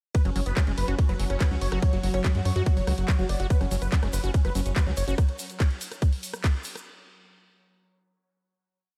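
An overdriven electronic kick drives this short, hypnotic psychedelic trance piece from its first beat, tight and up front in a steady four-on-the-floor pulse that runs until 6.5 seconds. Beneath it a round analog bass rolls in sixteenths, deep and mellow, while a squelchy, gritty acid bass sits further back with a distorted, resonant line full of accents, carrying sidechain pumping and dub echo. A punchy, detuned supersaw stab repeats a riff over a pedal note in sixteenths, its phaser and dub echo adding to the alien feel, and a metallic, wobbling FM bass slips in very quietly with short phrases between 0.5 and 2.3 seconds. Two pads fill the background: a very quiet, evolving wavetable drone that morphs under ensemble chorus, and an airy, breathy pad of slowly shifting chords that pumps with the sidechain. Programmed closed and open hats, ride, rim clicks and handclaps shape the backbeat, joined from 3.5 seconds by a grainy egg shaker that sounds distant, as if played in a large room. 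The whole thing is one continuous drop with a dark production and little reverb.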